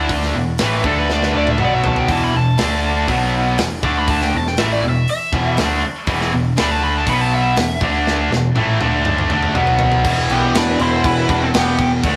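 A smooth, overdriven lead guitar solos through most of this driving, heavy hard rock excerpt at 121 BPM, over a riff that cycles through E5, D5 and B5. Beneath it, an up-front cranked stack guitar with spring reverb, a double-tracked high-gain guitar that drops out at 10.0 s, a sludgy background guitar, a growly, punchy picked bass and a tight metal kit with bright cymbals and drum fills push the groove. A dark octave-fuzz lead adds a second line from 10.3 s, all captured in a rough rehearsal-room recording with moderate small-room ambience.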